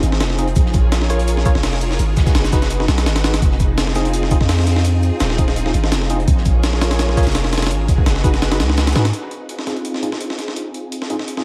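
A crackle of vinyl sits over a small room ambience in this frenetic, atmospheric drum and bass and jungle excerpt, cut from a longer piece and running at 168 BPM in 4/4 with a light swing on the 16ths, in F phrygian. Up front, a compressed, pitched-up breakbeat sampler-style kit drives the drop with a thumpy kick, a high-tuned snare and hi-hats, its gritty sound re-recorded in a large room and thinned by high-pass filters. Behind it, a saturated acoustic breakbeat kit with a rolled-off top adds hi-hat, shaker and a medium-tuned snare until 9.1 seconds, alongside a deep, sine-toned 808-style bass whose long notes have a fast attack and decay. A silky vintage string machine holds soft, evolving chords through an ensemble chorus over Fm7, Bbm7 and Abm7, while a worn, slightly out-of-tune tine electric piano, lightly overdriven and heard as if through built-in speakers, places stabs in the background with dub echo from 0.4 seconds. 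After 9.1 seconds the bass and second kit drop out, leaving the sampler kit as filter sweeps pass over the strings and electric piano.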